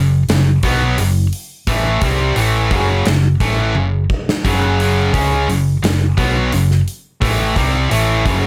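A straight 4/4 pulse at 87 BPM drives this anthemic, swaggering hard rock clip, cut from a longer piece, built on an F#5 power chord. Two distorted guitars play the riff from the very start, one scooped and high-gain sitting up front, the other compressed and bright, over a dark, round hollow-body fingered bass. A gated 80s drum kit enters at 0.3 seconds with a punchy kick, a medium-tuned snare, hi-hat and toms in an airy stone room, throwing in a fill at 3.8 seconds.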